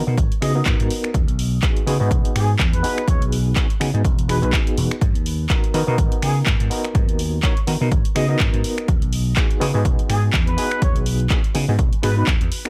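A dry, close mix sits under a filter sweep that runs through this groovy, funky slice of filtered disco house, cut from a longer piece and moving in a swung 4/4. An up-front electronic kick with a tape-warm analog punch anchors the groove, while a drum machine adds finger snaps, handclaps and pumping hi-hats. A growly, amped slap bass ranges from E1 to D#3, filtered and pumping. An overdriven, reedy electric piano through a combo amp carries the accompaniment with gritty fast tremolo, phaser and a low-pass filter, alternating between G#m7 and Emaj7. Above it, a dark, distant trumpet section plays the tight melody between G#4 and D#5, roughened by 12-bit sampler grit, tape echo and filtering, sitting low in the balance from 0.4 seconds to 12.2 seconds.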